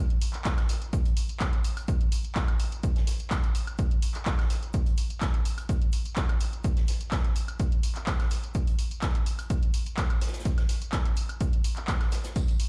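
House percussion groove with a feel-good, joyful mood, cut from a longer piece, built around an up-front electronic kick that sounds punchy and tape-warm, re-recorded in a small room. A punchy analog drum machine, re-recorded in a large room, supplies handclaps, hi-hat, tambourine and woodblock, while a natural-sounding swinging big-band drum kit sits in the background with hi-hat, shaker and a medium-tuned snare, its hats and percussion sidechain-pumped and its hats, snare, percussion and room high-pass filtered. A close acoustic tambourine with egg shaker and group handclap appears briefly at 12.4 seconds in the background, and the whole groove is bathed in large studio reverb, as if played on a big sound system in a bare room.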